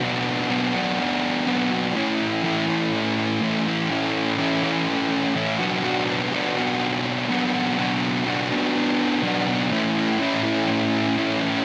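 Rock excerpt at 124 BPM in 4/4 with an angsty, dark mood, featuring a thick, double-tracked fuzz electric guitar alone and up front, picked with distortion from A2 to F#4 over chords moving between Bm and A, set in light reverb.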